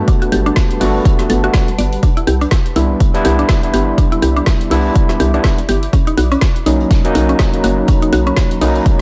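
Set in a digital ambience and cut from a longer piece, this relaxed, soulful deep house groove, swung on the 16ths, pairs a punchy, up-front electronic kick and a layered drum kit with woody snare and dark hats with a distant, roomy soft-mallet kit in the background, a hollow, bouncy FM bass, gritty overdriven tine electric piano stabs through a combo amp with digital delay, round mallet-like synth pluck arpeggios with chorus, and a deep, moody sawtooth pad sustaining chords that move from Gmaj9 to Cmaj9 and Bmaj9, with sidechain pumping on the bass, electric piano, pluck and pad.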